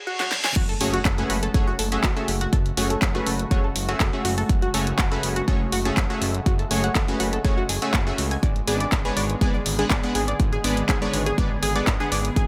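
A straight 4/4 pulse at 122 BPM drives this dreamy progressive house passage in F# minor, where a reverse cymbal in the background and a short drum fill lead into the drop at 0.6 seconds, marked by a background impact, with a punchy, up-front electronic kick, a pop drum kit with a fat snare, handclaps and pumping hats and crash, a very quiet, gritty, pitched-up breakbeat kit, and a thick, saturated analog bass under a lush, airy pad drenched in chorus and phaser, while a detuned unison pluck plays arpeggios through tape echo and a supersaw stab with a sub octave adds cassette-tinged hits, all moving from F#madd9 to G#dim at 8.4 seconds.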